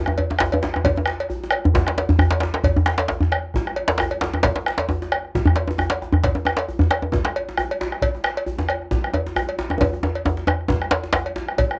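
Two djembes drive this festive West African drum ensemble excerpt at 134 BPM with a light 16th-note swing: one deep, warm, close and up front, the other distant, rattling with metal and struck with hard hands. A dark, deep bombo sits up front beside them, and a dry, metallic cowbell rings close by, all in a small, moderately reverberant room captured on home cassette, before a drum fill arrives at 9.8 seconds.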